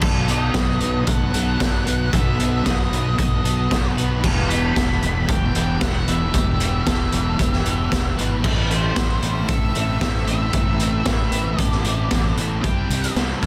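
Brooding and melancholic, this short shoegaze and dream pop rock excerpt piles a thick distorted fuzz riff, an overdriven guitar riff bathed in reverse reverb and a growly, punchy fuzz-fingered bass under a gritty, up-front garage drum kit with a boomy kick and high-tuned snare, while a twangy twelve-string electric guitar spins chorus-and-delay-soaked arpeggios, an octave-fuzz lead melody enters at 0.3 seconds, and a very quiet, detuned organ-like pad sustains chords beneath it all in a dense, heavily limited small-room mix.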